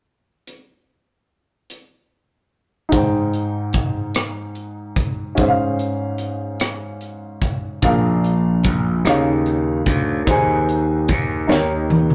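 A crisp fusion drum kit opens this slow, jubilant gospel piece in a straight 6/8, its high-tuned snare, rim clicks, hi-hat, toms and punchy kick sounding airy and polished up front. At 2.9 seconds a woody, natural upright piano enters with hopeful chords such as Abmaj7 and Dbmaj7/Ab, and at 7.8 seconds a gritty, overdriven slap bass joins with a bright, growly edge over Bb7 and Eb9sus4 harmony. The rough rehearsal-room sound carries tube saturation and a moderate studio reverb, and a drum fill closes the cut on Eb7.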